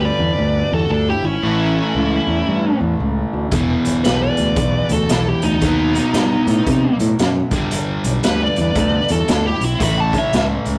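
A distorted, bluesy lead guitar carries the melody up front in this brooding, gritty blues rock and southern rock excerpt with a swung feel, shadowed by a dark, smooth overdriven second lead in the background, while a double-tracked overdriven semi-hollow guitar plays the riff, a bright, growling fingered bass with overdrive holds the low end, and a raw, punchy garage drum kit with a saturated, rolled-off top enters at 3.5 s, all set in a rough rehearsal-room sound with light reverb and saturation.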